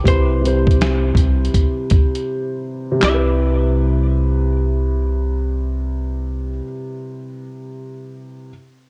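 A swung sixteenth-note feel at 81 BPM in 4/4 drives this short lo-fi hip hop cut in C major, with a dreamy, nostalgic mood resting on a Cmaj7 chord. A dusty, sampler-style drum kit sits up front with a thumpy kick, medium-tuned snare, hi-hat, finger snaps and handclaps, all gritty and compressed with a room-recorded character, before dropping out at 3.2 seconds. A deep dub fingered electric bass holds a low C, round and punchy. A dark upright piano supplies mellow, woody accompaniment with long sustain through cassette tape and a low-pass filter, and it carries on alone after the other parts stop at 6.6 seconds, through to 8.5 seconds. Above it, a clean, picked hollow-body archtop guitar plays a small melody high in its range, softened by a low-pass filter and echoed by analog delay. Light reverb and digital ambience give the whole a hazy, tape-worn glow.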